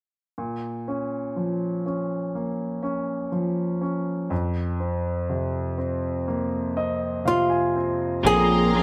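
Captured in a moderate stone room with the band playing live together, this heartbroken, melancholic pop fragment opens on a smooth, vintage concert grand piano with deep bass and long sustain, which adds a fill from 6.3 seconds before a fingerpicked flamenco guitar melody with finger squeak enters at 7.3 seconds, and at 8.2 seconds a dark, lush bowed string section with vibrato, slightly broken-up, compressed electric guitar arpeggios and a growly, up-front fretless electric bass join briefly.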